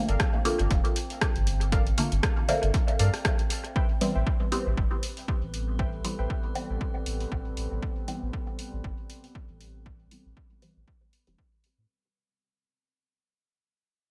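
Dub techno, meditative and deep, with a swung 4/4 pulse carried by an overdriven, punchy kick and an analog drum machine's hi-hat and rim click, both re-recorded in a large room, under a soft, round sub bass that sits up front with sidechain pumping. Muted, full-bodied sawtooth chord stabs with phaser and dub echo move from Gm9 to Am9 at 3.8 seconds, where a filter sweep runs on them and a fade-out begins, while warbling, nostalgic lo-fi synth keys play a riff in the background until 6.3 seconds. A metallic, eerie FM drone hovers in the background, and a dark, moody ambient pad enters at 5.1 seconds with chorus and reverb, all within an echo-heavy mix cut from a longer piece.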